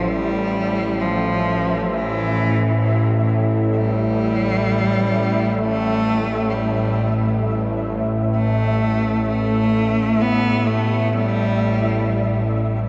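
An unsettling dark ambient drone in free time opens with a tense, string-like, bowed-like drone low in the register, joined from the first moment by a clear, close solo cello singing a focused melody with vibrato through a tape echo, while a grainy, flickering texture fades in high in the background over the full 12.9 seconds. The drone carries a sawtooth edge and a noise layer with slow attacks and long releases, set in a huge, wet reverb that lingers for 7.8 seconds. Worn cassette tape lends a warbling pitch drift to this short cut from a longer piece, centred on an A chord.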